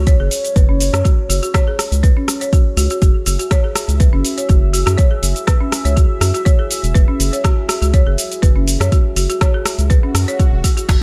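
Warm and hypnotic, this short afro house excerpt sits at 122 BPM in 4/4, with a gentle swing on the sixteenths and a single F#sus2 chord throughout. A deep, tape-saturated electronic kick sits up front, joined by a layered deep house kit of cabasa, crash cymbal, rim click and metallic hi-hats, both treated with studio reverb. A round, dark analog bass built from square, sine and triangle waves carries the low end with a fast attack and sustained notes. Above it, a folk marimba played with medium hard mallets spins woody, rustic arpeggios through tape echo, while a moody sawtooth pad with a sub octave holds slow-attack chords colored by chorus and phaser. The bass, marimba and pad all pump with sidechain compression, giving the groove a breathing quality. Near the close, a background electronic swell appears at 10.1 seconds, and a close, dry djembe with metal rattles enters at 10.9 seconds.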